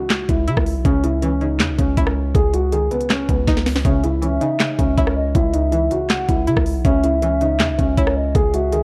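The recording is dry and sits on worn, warbling cassette tape with a drifting pitch, giving this dark, melancholic trap clip a faded, vintage cast. A mellow, boxy grand piano carries the melody up front with a touch of delay, while a twangy, string-like resonator pluck fills in the accompaniment through chorus and phaser. Underneath, a trap kit with a knocking kick, sharp snare, crisp hats, handclaps and rim clicks is overdriven and pushed forward, paired with a long, deep sine-like 808 bass that enters at 0.3 seconds. After a short drum fill at 3.5 seconds, a hollow, woody clarinet-like synth lead joins at 3.8 seconds as a second line, soft and sustained with vibrato, chorus and delay. The half-time groove moves through minor and suspended harmonies, keeping the mood brooding to the end of the cut.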